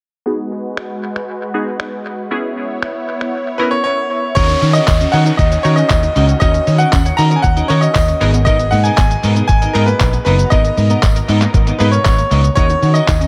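Energetic and confident, this dance-pop excerpt moves at 117 BPM in G# minor, opening with a filter sweep over a crisp, detuned wavetable chord stab and a lush, nasal sawtooth pad, both pumping under sidechain, before a muffled, pitched-down lo-fi drum kit with a thumpy kick, snaps, claps, hi-hat, shaker and crash joins at 0.8 seconds, and a silent gap falls just before the second section. A brilliant, polished grand piano carries the melody from 3.6 seconds, and at 4.4 seconds a dark, foam-muted fingered bass sits up front with a clean electric guitar riff, a very quiet analog pluck arpeggio and a faint downlifter, joined by a jingly tambourine at 4.9 seconds, while the chords move from G#m7 and C#m7 to D#m7 and G#madd9. The mix is dry yet echo-heavy, with dub echo trailing the drums, piano, guitar, stab and tambourine.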